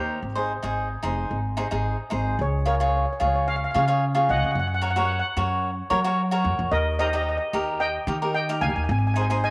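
A bouncy, sunny calypso in Db major at 111 BPM opens with a shimmering, metallic lead steel pan played with medium rubber sticks, a crisp, picked acoustic cavaquinho and a woody, dark pizzicato upright bass on steel strings, all three up front from the first moment. After a brief opening passage, the music moves at 2.4 seconds into a longer second passage, with the harmony stepping through Db, Gb and Eb before landing back on Ab. A wet spring reverb with a 2.0-second tail surrounds the trio in this short extract from a longer piece.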